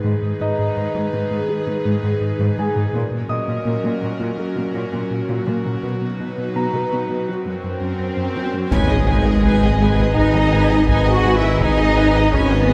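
A straight 4/4 pulse at 83 BPM carries this vast, futuristic hybrid orchestral and electronic film cue in G# minor, cut from a longer piece, where an airy, breathy pad with chorus, a gliding sawtooth synth bass, an expressive cello section and a brilliant grand piano with delay build together until a background swell rises at 7.6 s and its impact lands at 8.7 s, bringing in a lush violin section on melody and a second violin section in the background, a very quiet viola section, a French horn section, a barely audible dark trombone section, a mellow tuba, a double bass section, a round sine sub bass and a very quiet taiko ensemble inside a wet scoring-stage reverb heard from further back.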